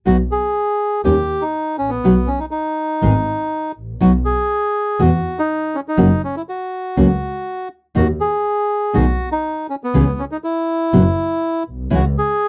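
Passionate and nostalgic, this short tango excerpt in B major moves at 121 BPM in 4/4 with a loose, rubato feel. A reedy, dark bandoneon carries the smooth melody in a middle register, while a full-bodied nylon-string guitar, fingerpicked with a deep classical tone, supplies the accompaniment and sits as the loudest part. Underneath, a single bowed double bass plays with a warm, expressive vibrato and portamento. The harmony travels from B through D#7 and Eadd9 to F#, then pauses on a chordless moment at 8.0 seconds before passing through G#m/B, C#m7 and F#sus4 to settle on C#m. All three instruments sit up front in a dry, close studio sound with a 1970s character and very little reverb. The guitar stops at 12.0 seconds, and the bandoneon carries on until 12.5 seconds.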